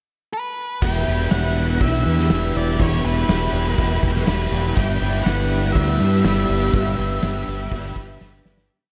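Opening with a dark octave-fuzz lead guitar that picks a motif-based melody through diffuse ambient delay at 0.3 seconds, this wistful, blissful shoegaze and dream pop piece at 122 BPM settles by 0.8 seconds into an Em7-to-G6 verse where a bright crunchy overdriven guitar strums chords with whammy-bar dips, a dark, slightly broken-up guitar through a small old amp adds volume swells with reverse reverb in the background, a shimmering, octave-doubled twelve-string acoustic picks boxy arpeggios, a growling fingered bass drives up front with overdriven eighth notes, and a loose indie drum kit with a tight kick pumps a big rock groove, all soaked in a cathedral reverb before a fade-out from 6.7 seconds and a closing drum fill at 8.2 seconds.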